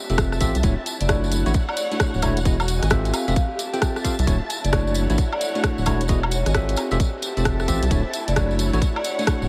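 A rubbery, hollow square bass sits up front in this sunny, soulful two-step UK garage excerpt at 132 BPM in D major, bouncing under a tight, tape-warm electronic kick and a garage kit of hi-hat, rim click and woodblock with a 64% swing on the 16ths, joined by a jingly acoustic tambourine. Bell-like electric piano stabs with tape echo ride over a dark, lush symphonic string section that pumps to the sidechain, while an airy, metallic vibraphone melody with fast motor vibrato and tape echo rings in the background from 1.0 seconds, all over a progression of Fmaj9, Dmaj9 and Emaj9 chords. A very quiet, silky string machine with phaser and ensemble chorus adds sustained chords from 4.9 seconds, all set in light digital reverb with vinyl crackle.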